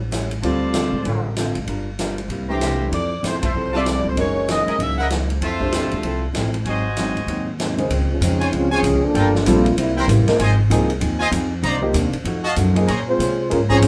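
A woody, growly upright bass opens this joyful big band swing excerpt. Almost at once, a dark, clean hollow-body archtop guitar and a swinging drum kit join it, with a punchy kick, a medium-tuned snare, hi-hat and ride cymbal sounding natural in a big room. A warm grand piano and a bright, distant trumpet section soon arrive, the trumpets firing stabs over the rhythm section. At 2.9 seconds an up-front saxophone section with light vibrato carries the melody briefly, and the whole band hits an accent at 3.4 seconds. The second half becomes a feature for a close-miked trombone section, which comes in at 8.1 seconds with a second line and returns near the end, all set in a moderate club reverb.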